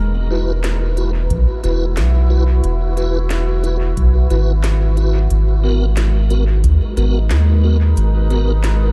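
A straight 4/4 pulse at 90 BPM anchors this short, meditative slice of ambient dub, with a dry, analog-style electronic kick sitting in the background from 1.3 seconds. Above it, an electronic kit re-recorded in a large room adds a woody snare and crisp hi-hats, both trailing dub echo. Up front, a round, soft sub bass built from triangle and square waves holds the low end with a fast attack and sustained notes. A moody, detuned sawtooth pad with a sub octave, slow attack and long release spreads dark sustained chords through chorus and reverb, moving from Esus2 to G#m7 at 5.3 seconds. A piping, scooped tonewheel organ plays lightly overdriven stabs with key click, chorus vibrato, a fast rotary speaker and dub echo. A digital ambience with lossy compression artefacts colours the sound of this deep passage cut from a longer piece.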